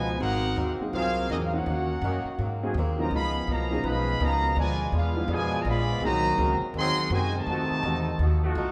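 Big band swing jazz at 165 BPM in 4/4, joyful and brassy, this short cut from a longer piece swings its eighth notes and sits on chords like Ab9, Ebm7, Db9 and a closing F7b9. A clear, present trumpet section carries the melody up front with light vibrato, while a close-miked trombone section, also clear, plays a second line beneath it. The woody, thumpy upright bass is plucked and sits prominently in the mix, joined in the background by a boxy picked acoustic guitar keeping swing-style accompaniment. A natural-sounding baby grand piano adds accompaniment from 0.8 to 6.6 seconds, and from 0.9 seconds a dark, vintage-toned trombone section holds soft-attacked sustained chords behind the band. The whole ensemble rings in a wet recital hall reverb, giving it the spacious sound of a church or concert hall.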